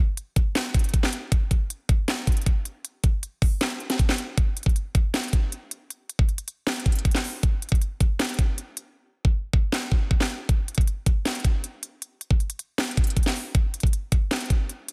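Hip hop at 157 BPM in 4/4 with a half-time feel, this brooding, menacing excerpt from a longer piece is carried by an electronic trap drum kit that runs from 0.2 to 14.9 seconds. Up front in the mix, the kit's knocking kick, sharp snare, crisp hi-hats and handclaps sit in light reverb under a dense, heavily limited modern master. The opening section gives way to a second at 4.4 seconds, and the hi-hats drop out briefly between 9.0 and 10.5 seconds.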